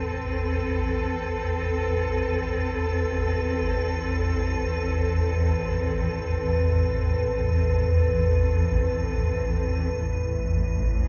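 A swarming, detuned drone sits up front with built-in reverb and analog chorus, beneath a lush, bowed cello section playing sustained chords with vibrato and an icy, crystalline glass pad, all in an ominous, desolate ambient passage in free time in A minor, moving from Amadd9 to E5/A at 10.0 seconds in a dreamy, reverb-soaked mix.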